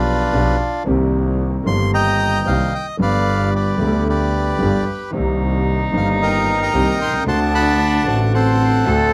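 Dramatic and passionate, this short tango excerpt in C minor moves with a rubato feel around 113 BPM, as a reedy, full bandoneon sings the melody up front over an intimate concert grand piano with audible action noise and deep bass, a clear, earthy bowed double bass with light vibrato, and a nasal, gut-string cello that enters at 5.1 seconds with an airy bow to add a second line, all set in light reverb and captured with close, detailed microphones.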